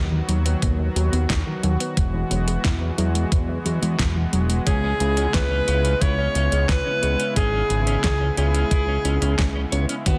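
A smooth, detuned analog pad pulsing with sidechain pumping and tremolo opens this driving, moody synthwave excerpt at 89 BPM in C# minor over a fat, saturated sawtooth bass up front, soon joined by a warbling lo-fi pluck playing chorused, delayed arpeggios until 4.6 s, a pop kit with a fat snare and metallic hats, and a thumpy electronic kick, before a breathy, intimate alto saxophone carries a jazz-style melody with digital delay from 4.7 s alongside a dark, slightly broken-up electric guitar riff in the background, the mix sitting in light reverb within a dense, heavily limited modern master.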